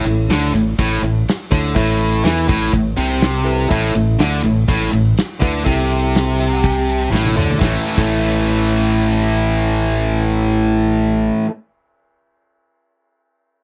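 A dry, close studio sound in the 1970s manner frames this short classic rock cut, taken from a longer piece and moving at a straight 123 BPM in 4/4 with a swaggering, sunny mood that sits on an A chord. Two overdriven electric guitars carry the riff in a low register, one pushed up front, and both have a bright, picked bite. A punchy fingered electric bass sits up front and direct beneath them, while a barky, reedy electric piano with light overdrive comes through its built-in speakers in the background. A big acoustic drum kit with a punchy kick, a medium-tuned snare, ride, crash and toms plays from the start with a rolled-off top, and a grainy, band-limited egg shaker joins quietly at 3.7 seconds. The electric piano plays a fill from 6.2 seconds, the drums add a fill just before a new section begins at 7.6 seconds, and the kit and shaker stop at 8.1 seconds, while the guitars, bass and piano carry on to the end.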